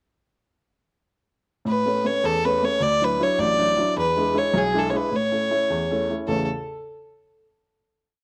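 A lively, rollicking Celtic folk piece in a straight 6/8, where a nasal, reedy fiddle with a gut-string tone carries a motif-based melody in period phrases over an upright piano's woody, short-sustained oompah of bass notes and chord figures, both up front in a dark production with plate reverb on the fiddle, moving from Aadd9 through Dadd9 and E7 to settle on a final chord at 6.3 seconds.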